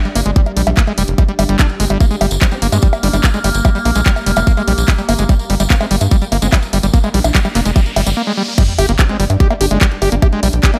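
A drone with shifting, ring-modulated overtones opens this driving, alien psychedelic trance excerpt in G phrygian at 146 BPM, sitting in the background with chorus, its own reverb and sidechain pumping on sustained chords. Almost at once a squelchy, screaming acid riff cuts in, its resonant sawtooth tone distorted and thickened with chorus and digital delay, while a layered electronic drum kit adds bongos, crash cymbal, handclaps and hi-hat in a small room ambience. A tight, punchy sequencer bass with a plucky filter and tube saturation sits up front beside a tight electronic kick that carries the pulse. A jingly acoustic tambourine enters at 2.0 seconds, and a very quiet, wobbling formant-swept bass line drifts in and out with chorus. A riser builds from 7.1 seconds toward a short break, and at 8.6 seconds the drop lands with an impact and sub drop under light reverb.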